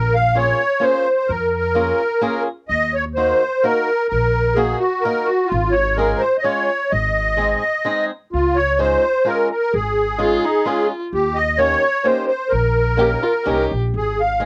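A charming, whirling musette waltz in 3/4, this short cut from a longer piece moves through a minor-leaning progression of Bbm7, Ebm, Db/Ab and Ab before settling on Dbadd9 and Eb7. The musette accordion carries the melody up front, its reedy, shimmering musette tuning sitting in a boxy small room. Beneath it, an upright bass plays pizzicato on steel strings with a woody tone, while a picked swing-style acoustic guitar comps from 0.4 seconds, its finger squeaks audible. At 10.2 seconds a single bowed violin slips in with a dark second line and light vibrato, staying until 13.8 seconds. Light reverb and a home cassette recording give the accordion, guitar and violin a worn, intimate character.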